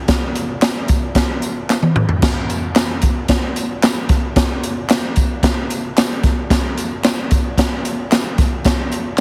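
Soul drum groove at 112 BPM in 4/4 with a straight, danceable feel, cut from a longer piece, where a polished, up-front acoustic big-band kit with a punchy kick, medium-tuned snare and dark cymbals plays a fill from 1.7 to 2.2 seconds, while tube shaker and group handclaps sit close and dry in the background, all under a heavily compressed radio sound with little reverb.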